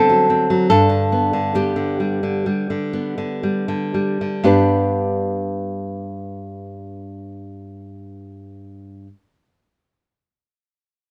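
This is a romantic piece for solo classical guitar, a short cut from a longer work, in G major and 4/4 with a rubato feel moving between 57 and 80 BPM. The mood is nostalgic. A single nylon-string guitar plays throughout, fingerpicked and placed up front, with a warm acoustic tone spanning G2 to B4 and audible finger squeak on the strings. The opening phrase slows down over its first 4.4 seconds, moving from a D7 chord onto G, before a second phrase carries on to 8.0 seconds. A moderate small-room ambience surrounds the guitar.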